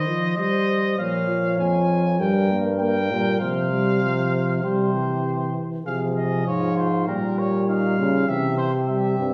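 A clear trumpet opens this excerpt with the melody, joined from the start by a mellow flugelhorn on a second line and a dark, close-miked euphonium in the accompaniment. At 1.0 seconds a second euphonium enters on the bass, placed up front and warm in tone. This is a serious, solemn imitative canzona for brass ensemble in a straight four-beat metre, with each player using a light vibrato and a classical style. The trumpet and flugelhorn sit more distant and roomy, while the lower euphonium voices feel closer. The harmony moves through minor and diminished colours with a suspended chord resolving, and a new section begins at 5.9 seconds. A recital hall's reverb places the ensemble further back in the room, and the passage is cut from a longer piece.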